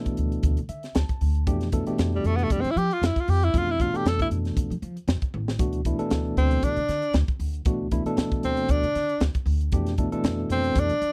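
A clean tine electric piano, heard through its built-in speakers, opens this bright, slick electric jazz fusion excerpt at 116 BPM with a short fill, over woody, dark pizzicato upright bass and a crisp, airy drum kit with a high-tuned snare and tight kick. A clear, forceful tenor saxophone with slapback echo enters up front at 2.2 seconds for a jazz-style solo, its punchy, scooped notes carrying vibrato and a smooth top, while the harmony moves between Dsus2 and Fmaj9 and the drums add a fill at 5.3 seconds. The sound is dry and close, in the manner of a 1970s studio recording, with a lightly swung sixteenth-note feel.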